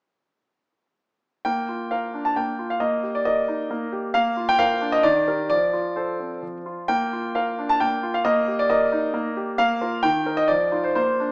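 Heard through a small speaker with a moderate recital-hall reverb, this fragment of a classical-period piano sonatina sets a solo concert grand up front, its tone warm and natural with a deep bass, playing from 1.4 to 11.3 seconds. In Bb major and 3/4 at 133 BPM with a rubato feel, the playful, graceful music moves among Bb, Eb and F harmonies across a range from Eb3 to A5, closing on Dm7/F as the fragment breaks off.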